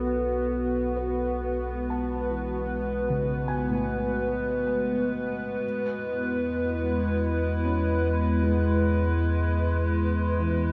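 A warbly, tape-like pad sits up front with detuned, nostalgic chorused chords, shifting from B5 to E69 at 5.6 seconds in this melancholic, reflective ambient fragment cut from a longer piece. A round, deep analog bass and a felt-muted upright piano, mellow and intimate with audible action noise and tape echo, both fade in slowly across the full 10.7 seconds, the piano's arpeggios staying in the background. A bright, string-like drone with vibrato holds a tense B3, all set in a lush hall reverb with a dark, warm production.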